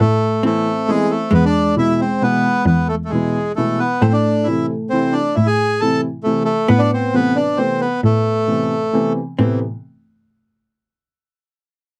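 Bittersweet and whirling, this musette waltz moves at 134 BPM in 3/4, set in A harmonic minor, with a reedy bandoneon up front carrying the melody over a bowed cello bass with vibrato and woody depth. A clean, picked hollow-body electric guitar sits compressed in the background as a second line, while a mellow upright piano joins the accompaniment at 0.4 seconds, the chords moving from Amadd9 through E and Am back to Amadd9. Light reverb frames a dark, warm production in this short cut from a longer piece.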